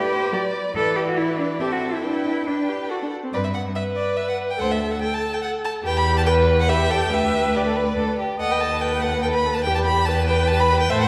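A rich, focused first violin carries the melody up front in this lively, spirited excerpt from a quick classical-period string quartet movement in G major, moving at 142 BPM in a straight 3/4. Beneath it, the second violin sings an expressive inner line with soft attacks and portamento, the viola supplies vibrato-laden accompaniment, and a clear, up-front cello anchors the bass, all four bowed by single players. Heard from further back in a wet scoring stage, the passage shifts at 3.3 seconds from its opening section into a second one whose harmony turns through B7/D# toward E minor.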